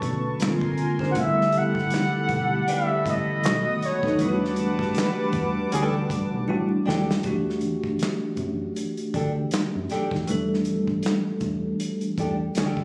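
A late-night, smooth slice of R&B and neo-soul cut from a longer piece, moving at 79 BPM in 4/4 with a light sixteenth-note swing. A breathy, mellow flugelhorn carries the melody up front in jazz style, with vibrato, scooped notes and a tape echo, until it drops out at 6.5 seconds, just as the drum kit plays a fill leading into the second section at 7.2 seconds. Beneath it, a bell-like tine electric piano rings clean and bright throughout, while a chorused pulse-width pad adds shimmering, retro, detuned sustained chords with a slow attack before dropping out at 7.2 seconds. A deep, round dub bass, foam-muted and dark, anchors the low end alongside a soul drum kit with a punchy kick, medium-tuned snare, hi-hat and handclaps, and very quiet, soft-handed congas enter at 0.4 seconds. A fingerpicked flamenco guitar with fresh strings joins as a second line at 1.0 seconds, over chords such as A#9, A9sus4, B7 and Em11, all set in a light, small-room reverb with the slightly informal sound of a phone recording.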